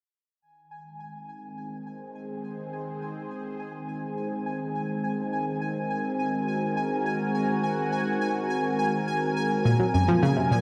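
A sweeping, resonant pad fades in on sustained, detuned sawtooth chords from Ab to Gb alongside a pulsing, tempo-synced triangle texture high on Ab5, drifting in free time through expansive, mysterious ambient space music bathed in a huge 7.1-second reverb with lossy artefacts, until a round, wave-folded analog pluck riff with chorus and delay cuts in at 9.7 seconds just before this fragment of a longer piece ends at 10.6 seconds.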